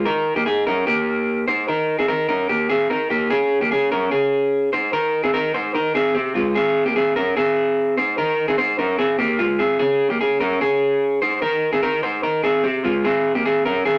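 This indie pop excerpt has a breezy, nostalgic mood, moving at a brisk 148 BPM in a straight 4/4 and set in Ab major, with the tuning sitting at A4 = 441 Hz. A lone electric guitar carries the whole 14 seconds, picked and placed up front, played through a small old amp whose tube saturation gives it a dark, slightly broken-up character. Its line ranges from Ab3 to C5. After a brief opening on Eb, a new passage begins at 3.3 seconds, and the harmony moves through Abmaj7, Db5, a rootless Fm7 and Bbm7 before returning to Abmaj7 and Db5. A moderate studio reverb lends the guitar a gentle sense of space.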